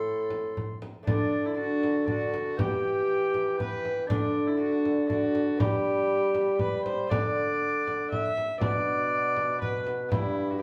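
Solemn and courtly, this fragment of a renaissance-style consort dance moves at 119 BPM in a straight 3/4, with a soft-attacked, distant oboe carrying the high melody while a rich, reedy viola with light vibrato and gut-string tone plays the second line up front. Beneath them, a delicate, bright fingerpicked lute with double nylon strings, some of them octave-doubled, gives accompaniment over a warm bassoon bass, and a small frame drum struck with hard hands joins at 0.3 s. The whole consort sounds heard from further back in a stone room, its reverb lending a roomy glow as the harmony moves through chords such as Am, D, Em, G and Bm.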